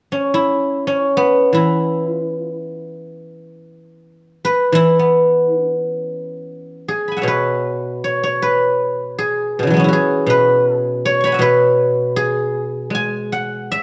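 Pastoral and flowing, this fragment of traditional Chinese solo plucked-string music features an up-front acoustic guzheng, played with fingerpicks and heard alone, whose bright, silvery, ringing tone spans B2 to C#6 in an E gong mode, moving freely in rubato around 60-82 BPM in 2/4 and shifting into a second section at 6.9 seconds, all within a dark production and the moderate reverb of a recital hall.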